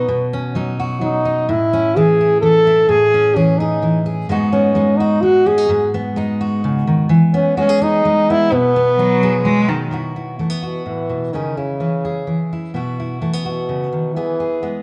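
A French horn carries the melody from start to finish, its tone warm yet distant and roomy, played in a classical style and sitting up front. Beneath it, a fingerpicked jumbo steel-string acoustic guitar supplies the accompaniment with a dark, full-bodied sound, and a little finger squeak can be heard. Briefly, between 9.0 and 9.9 seconds, a single bowed cello adds a second line, rich and expressive, with vibrato, a soft attack and portamento. The piece moves at 128 BPM in a straight 3/4, in B mixolydian, tuned to A4 = 441 Hz, with a pastoral, hopeful mood suited to an acoustic folk duo or small band. Harmony drifts from Badd9 through Amaj7, G#m7 and E, and a new passage from 9.9 seconds circles Bsus4 and C#m before settling on E. Recorded in a church or concert hall with moderate recital-hall reverb, this clip is cut from a longer piece.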